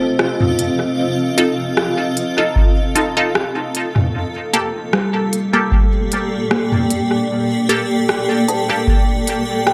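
An echo-heavy mix with light reverb and a digital ambience sets the tone for this deep, spacious slice of ambient dub, cut from a longer piece in G minor at 76 BPM in 4/4 with a gentle swing on the sixteenths. A bright granular cloud pad sits up front, sustaining blurred, detuned chords that move from F7 to Gmadd9 at 4.1 seconds. Behind it, a woody, hollow kalimba rings out soft arpeggios through dub echo. A muted, resonant filtered chord stab punctuates the harmony with quick-decaying, wave-folded stabs treated with phaser and dub echo. From 0.2 seconds an organic electronic drum kit adds crisp hats, rim clicks and toms, overdriven and re-recorded in a large room with dub echo trails, and an overdriven, analog-flavoured kick drum anchors the low end from 2.6 to 9.0 seconds.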